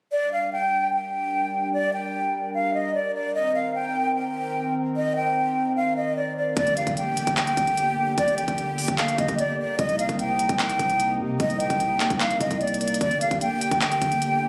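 Captured on a phone in a club-like room with light reverb and compression, this dark, brooding trap hip hop excerpt at 149 BPM in half-time G minor opens with a breathy, expressive silver concert flute carrying the up-front melody with vibrato over a smooth, detuned sawtooth analog pad with chorus moving between Gm and Cm7, until at 6.6 seconds a very quiet electronic impact lands as a trap kit of hard-clipped kick, crisp hi-hats and handclaps and a deep, decaying sine 808-style bass join in.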